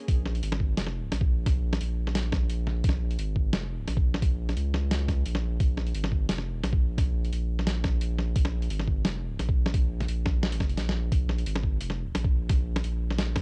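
Half-time drum and bass in Bb minor at 174 BPM, this dark, cinematic excerpt sits in a drop from start to finish, with a slight swing on the sixteenths. A deep, thick, saturated sub bass with a triangle-like tone holds up front between F1 and Db2, while a thumpy, pitched-down electronic kick and a gritty, compressed sampler-style kit with a medium-tuned snare and hi-hat carry a tape-coloured grain. The sound is dry and close, like a home cassette recording, and a brief drum fill arrives at 10.8 seconds.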